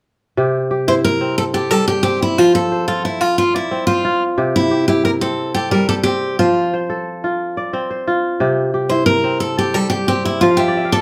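West African traditional music in a straight 12/8, joyful and hypnotic, built on a kora playing ringing, crisp arpeggios that enter at 0.4 seconds and close with a short fill from 10.5 seconds. A picked steel-string acoustic guitar with a woody, old-strings tone joins at 0.9 seconds, carrying a narrow melody up front alongside the kora as the harmony sways between C and F. The band plays live in one room, and a moderate large-studio reverb lends the short excerpt a natural sense of space.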